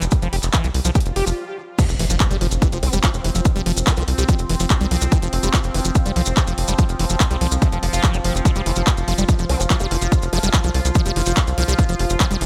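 Psychedelic trance at 144 BPM, intense and heady, where a quiet electronic swell and a brief stop at 1.4 seconds give way to a drop with an impact at 1.8 seconds, powered by a heavy, tape-warm kick up front and a techno kit of crash, handclaps and warm hats in a small-room ambience. Beneath them, a tight, punchy sequencer bass drives with plucky filter decays while a squelchy, resonant acid bass riff runs through phaser and digital delay, pumping against the kick. A bubbling stepped-filter texture sustains chorused chords, grainy maracas sit far back, and a faint, nasal vowel-sweep wobble bass surfaces briefly first around 2.8 seconds.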